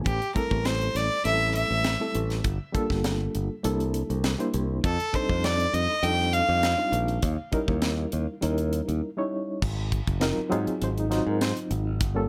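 A reedy, barky electric piano, lightly overdriven and colored by tremolo, opens this soaring, slick stretch of electric jazz fusion alongside a growly, punchy fingered electric bass. A crisp fusion drum kit enters almost at once in a straight 4/4, its high-tuned snare, punchy kick, hi-hat and crash cymbal sitting up front in an airy studio room. Over this, a single violin carries the melody with a clear, nasal, earthy tone, light vibrato and an airy bow, its close sound trailed by tape echo until it falls away at 6.9 seconds. The harmony moves through lush extended chords such as Am7, Gm9, C13 and Eb7b9. A brief break at 9.0 seconds leads into a new section at 9.6 seconds that settles on Ab13, where piano, bass and drums carry on together under a light reverb before the clip is cut from the longer piece.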